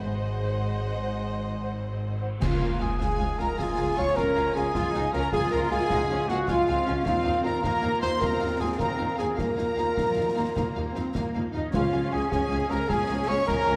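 Lush, vibrato-rich violins carry a soaring melody in this triumphant, heroic film-score excerpt in 12/8, with a second violin line, very quiet expressive violas, and smooth cellos and distant, rich double basses beneath. Mellow French horns and very quiet, bright trombones hold sustained chords while a mellow trumpet adds stabs, and airy flutes, a brief dark clarinet and a roomy cor anglais weave quiet secondary lines. A cymbal swell with clash cymbals and bass drum opens the piece, then at 2.4 seconds a band accent brings in concert snare, cymbals and bass drum alongside hard-mallet timpani hits, all within a dark production bathed in a scoring-stage reverb.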